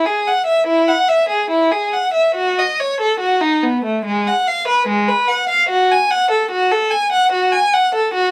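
Close, detailed miking with light reverb captures this 8.3-second excerpt of a baroque-style classical suite movement, where a single rich, focused bowed violin with vibrato plays alone throughout, its flowing, dance-like line moving in free rubato around 73 BPM in 4/4, tuned to A4 = 438 Hz and spanning Ab3 to G#5.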